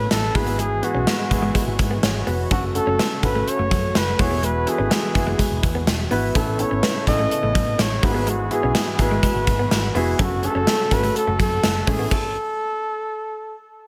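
A straight 4/4 beat from a punchy, up-front gated 80s drum kit with bright cymbals drives this glossy, romantic 1980s-style pop excerpt, where a close-miked flugelhorn with vibrato and scooped notes sings the tape-echoed melody over polished baby grand piano, a round, dark hollow-body picked bass, a chorused clean electric guitar riff in the background, and a very quiet, smooth detuned analog pad, until the band stops at 12.1 seconds and the flugelhorn carries on alone to 13.6 seconds.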